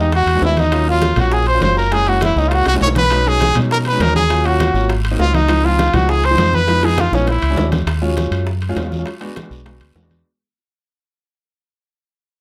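In a moderately reverberant studio sound, this lively, sunny Afro-Cuban jazz cut from a longer piece moves at 201 BPM in a straight 4/4, with a bright, close-miked trumpet carrying the melody up front over a soft, felt-muted upright piano playing a second line very quietly above it, both stopping at 7.7 seconds, while a woody, polished upright piano with long sustain comps through chords such as Ebm9, Gb7 and Dbmaj9, a dark, round fingered electric bass drives from the front, and background congas with thick damped skins, tight high-tuned bongos, a raspy dry guiro and faint ringing metal-shell timbales keep the groove, with drum fills breaking in before a fade-out from 7.9 seconds.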